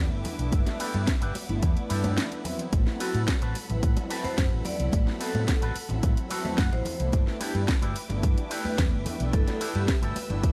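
A punchy, overdriven electronic kick sits up front in this sleek, sensual nu-disco excerpt at 109 BPM in a straight 4/4, arriving at 0.5 seconds. Around it, a layered house kit adds a cracking snare, bright hi-hats and ride cymbal with its own overdrive, while high-tuned congas play distantly in a large room in the background. A dark, round hollow-body electric bass anchors the low end, and a twangy, picked guitar riff runs through an envelope filter and analog chorus. Mellow, detuned sawtooth synth brass with a filter sweep, chorus and tape echo pumps against the kick alongside a clear, focused bowed string section in the background, voicing G6 and Am69 chords. After a short break at 2.2 seconds, a metallic, ringing vibraphone with tape echo enters at 3.0 seconds for a melody, and a clean electric guitar fill appears later. The mix is dry, with little reverb and some lossy compression artefacts.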